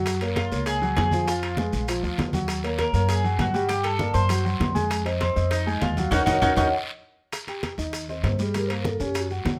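A warm grand piano and a woody, thumpy pizzicato upright bass up front open this lively, sunny Afro-Cuban jazz excerpt at 198 BPM, joined at once by low-tuned congas, tight high-tuned bongos, ringing saturated timbales, a raspy guiro and grainy, distant maracas, before a mellow, airy vibraphone with soft mallets takes the melody at 0.4 seconds over a bright, picked mandolin second line that drops out at 6.7 seconds, with a drum fill and band accent leading into a vibraphone solo at 7.3 seconds.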